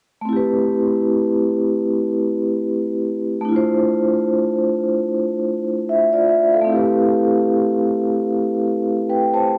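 Melancholic and reflective, this hip hop excerpt rests on a lone vibraphone played with medium hard mallets, its metallic, ringing tone softened into a vintage, band-limited color by cassette tape and a low-pass filter. Sitting up front with a medium motor vibrato and a light studio reverb, it moves over a lazy swung sixteenth-note feel through Am9, Dm9 at 3.5 seconds, and back to Am9 at 6.7 seconds, with the homemade cassette recording lending a dusty intimacy.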